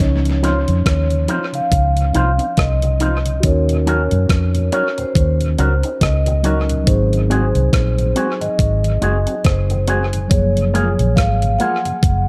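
Soft-mallet vibraphone opens this tender, sweet lovers rock reggae excerpt at 0.0 seconds, ringing and metallic with a slow motor vibrato and a close, full sound touched by tape echo. It arrives together with a mellow, clean tine electric piano whose accompaniment trails into dub echo, a dark, round, foam-muted fingered bass sitting up front, and a thumpy, sampler-style 12-bit drum machine of kick, hi-hat and rim click, overdriven and sent through its own dub echo. The tempo is an unhurried 70 BPM in 4/4, with a lilting swing on the sixteenths, and the key is Db major. Just after the start, a very quiet, flute-like tonewheel organ with chorus vibrato and key click slips in beneath, while a bright, twangy electric guitar adds picked, compressed stabs through an envelope filter. The chords move from Dbmaj9 to Ebm7, Ab7 and Gbmaj9 under a light reverb, and the passage is cut from a longer piece, ending at 12.3 seconds.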